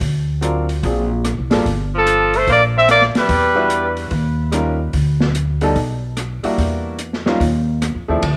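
Small-group swing and bop jazz at 146 BPM in a cool, swinging mood, cut from a longer piece, where a woody pizzicato upright bass and a dark, boomy open drum kit with hi-hat, ride, rim click and snare run throughout, a clear baby grand piano comps from 0.4 seconds, and a punchy trumpet with tape echo and scooped notes carries the melody from 2.0 to 4.0 seconds over a forceful tenor saxophone second line, all in a light small-room reverb over altered and ninth chords.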